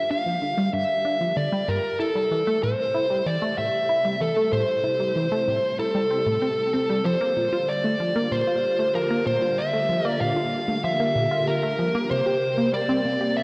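Drenched in a wet plate reverb and a worn, warbling cassette sheen with drifting pitch, this expansive, hypnotic ambient passage is cut from a longer piece and moves from Gm7 through Am7 and Bb6 to a third-less C7. A dark, compressed fuzz lead guitar sits up front with the picked melody through distortion and tape echo, while a tight, driving sequenced synth riff of detuned sawtooth plucks, mellowed by chorus, phaser and tape echo, pulses beneath. A swirling, vintage string machine fades in with slow-attack sustained chords, bright under its ensemble chorus and phaser.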